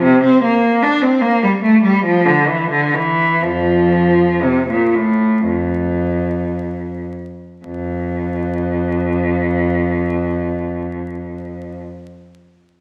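A single bowed cello, rich and smooth with vibrato, plays alone from 0.0 to 11.8 s in a flowing, serene baroque-style classical suite movement in F major, moving with rubato at 53-75 BPM and slowing down through its first 7.7 seconds before a new section begins, all set in a reverberant stone room beneath a layer of vinyl crackle.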